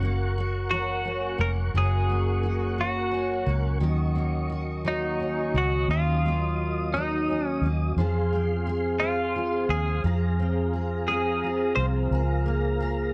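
A dark, lightly reverberant pop excerpt with a tender, heartfelt mood, moving in 6/8 at 58 BPM, where a double-tracked, full-bodied jumbo acoustic guitar and a round, punchy, foam-muted vintage electric bass sit up front beside a smooth tonewheel organ holding sustained chords with chorus vibrato, key click and a slow rotary speaker over Gb, Ebm7, Fm and Db6, while a bright, twangy, compressed twelve-string electric guitar carries the melody from 0.7 to 11.8 seconds.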